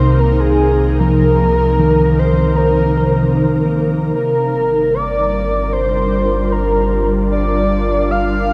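A straight 4/4 at 76 BPM carries this weightless ambient passage, cut from a longer piece, as the harmony moves from Cm7 to Gm7 at 4.2 s. Up front, a breathy, flute-like synth lead sings the melody with vibrato, analog chorus and tape echo over an ethereal, airy pad of slow-attack sustained chords. A worn, slightly out-of-tune tine electric piano plays lightly overdriven arpeggios through tape echo, and a round sine sub bass holds the low end. A very quiet, warbling organ-like drone on Bb3 lingers until 4.2 s, and the cassette-toned recording sits in a huge, wet reverb, with an overall warm mood.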